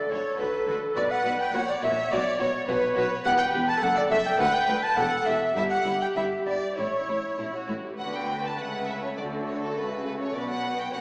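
A distant, wet scoring-stage sound heard from further back in the room, with a small-speaker quality, frames this brief, spirited excerpt of a quick classical-period movement for symphony orchestra in 2/4, moving with a cheerful, rubato feel. A mellow clarinet carries a second line from the opening until 7.7 seconds, standing out prominently against the strings. Two rich, focused violin sections share the melody and another second line, their bowed vibrato giving the texture a rich ensemble glow, while a smooth, even viola section fills in the accompaniment. Below, an expressive, warm cello section and a lush, close double bass section anchor the harmony as it moves through chords such as D, F#m and Em/G before returning to D and closing on B5. Barely audible timpani, struck with soft mallets for a round, dry tap, appear briefly between 9.2 and 10.0 seconds near the end of the fragment.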